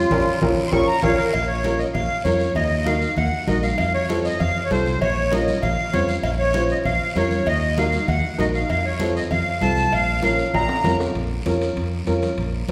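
Latin cumbia, driving and fiery at 196 BPM in Bb harmonic minor, where a reedy, sweet accordion with light tremolo tuning carries the melody up front until 11.0 s over a clear, worn, slightly detuned upright piano, a punchy fingered electric bass, background congas, ringing timbales and cowbell, and a raspy guiro, with drum fills at 0.1 s and 10.5 s and a Bbm, Ebm, F chord cycle inside a wet hall reverb.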